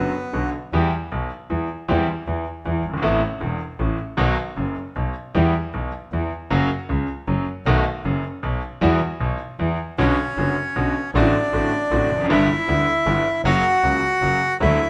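Sultry and passionate, this tango excerpt moves at 156 BPM in a rubato 3/4, starting in E harmonic minor and shifting to B minor at 10.0 seconds. A brilliant concert grand piano with deep bass and long sustain carries the accompaniment throughout, while one bowed double bass with a gut-string tone and light vibrato holds the low end. The up-front, reedy bandoneon sounds briefly at the start and then returns to take the melody from 10.0 seconds, all set in a moderate stone room reverb that captures the players performing live together.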